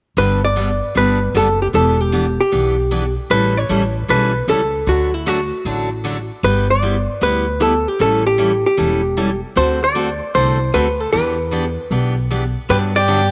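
Light reverb and a small-room ambience frame this playful, cheerful country piece, cut from a longer performance and carried on a swung eighth-note feel in 4/4. A dark, clean hollow-body electric guitar takes the melody up front, its picked lines compressed and sitting in a compact upper-middle range. Underneath, a bright jumbo acoustic guitar with fresh strings plays a full-bodied, picked accompaniment. A woody, thumpy upright bass, played pizzicato, anchors the low end from the opening at 0.2 seconds. The harmony moves through G, Em7, A7 and D before turning to G6, A7, D7 and Em7 and then a closing Gmaj7, where a biting, nasal fiddle with light vibrato enters at 12.7 seconds for a brief second line.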